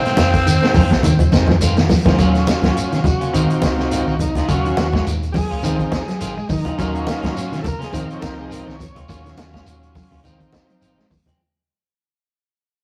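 A rough rehearsal-room recording with tube saturation and a moderate stone-room reverb gives this afrobeat excerpt a driving, defiant energy. It opens with a raspy, gritty tenor saxophone carrying the melody alongside a bright, forceful alto saxophone, both with vibrato, and the pair stop at 1.6 seconds as a drum fill on the vintage kit leads into the next section at 2.2 seconds. From there a transistor combo organ solo runs over chords alternating between Ebm9 and Dbmaj9 while the piece fades out, and the buzzy, overdriven combo organ, heavy with vibrato, accompanies throughout. Underneath, the kit's punchy kick and medium-tuned snare sit mid-forward with a rolled-off top, low-tuned hard-hand congas sound close and thick-skinned, and a grainy, mellow shekere rings distant in a large room. A dark, round hollow-body bass holds the low end, while in the background a clean semi-hollow guitar plays arpeggios with slapback echo and a slightly broken-up electric guitar adds warm picked stabs.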